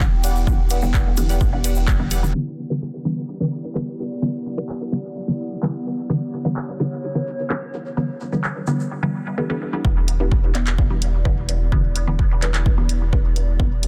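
A muted, detuned dub chord stab with phaser and dub echo sits up front in this nocturnal, cavernous dub techno excerpt at 128 BPM in E dorian, over a warbling, tape-like pad with chorus and sidechain pumping, a dry analog drum machine's handclaps, low-pass filtered hi-hat and ride, a grainy egg shaker, and nostalgic lo-fi synth keys heard only from 0.2 to 2.2 seconds, while a punchy electronic kick and a round, soft sub bass drop out after the opening seconds and return at 9.8 seconds.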